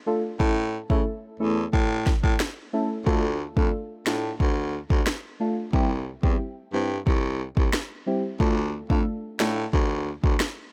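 Dancehall at 90 BPM in D minor, tough and bouncy, where a growling, raspy baritone saxophone carries the bass line up front over a dry, electronic afro-pop drum kit with a deep kick, sharp snare and rim click, while a dark, mellow chord stab with chorus and phaser enters at 0.1 seconds and moves through A, D minor and C in this short cut from a longer piece.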